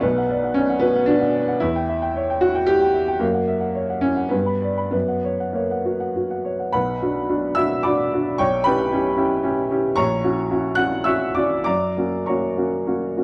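A clear, woody upright piano, slightly detuned and up front, plays alone throughout this stormy, passionate romantic character piece in 3/4 with a free rubato feel, ranging from A#1 to F#6 over Bm, F#7 and G harmonies before a second section begins at 6.8 seconds and settles on F#, its sound framed by a moderate studio reverb and a dark production, the passage cut from a longer work.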